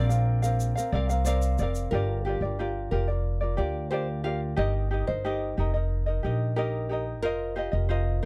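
Carefree and easy-going, this short acoustic pop excerpt moves at 90 BPM in a straight 4/4, with a fingerpicked, light ukulele and small-sounding nylon-string guitar arpeggios carrying the accompaniment over a woody, thumpy pizzicato upright bass sitting up front. A grainy, bright egg shaker joins a very quiet upright piano with audible action noise and long sustain for the opening, both dropping out at 1.9 seconds as the harmony moves from Bbadd9 to Gm7 and then Eb at 4.6 seconds. The dry, close recording has the character of a 1970s-style studio session.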